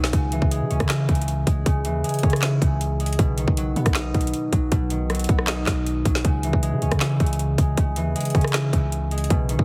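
Dark and menacing, this short trap cut from a longer hip hop piece moves at 157 BPM with a half-time feel in C# minor, cycling through C#m, B and back to C#m. An up-front, ringing concert harp, fingerpicked and filtered to soften its acoustic glow, carries the accompaniment over a deep, sine-like 808-style bass whose long, mellow notes strike fast and decay. A produced electronic drum kit sits forward with a hard-clipped kick, woody snare, metallic hats, rim clicks and handclaps, all in a dry, heavily compressed, radio-like sound.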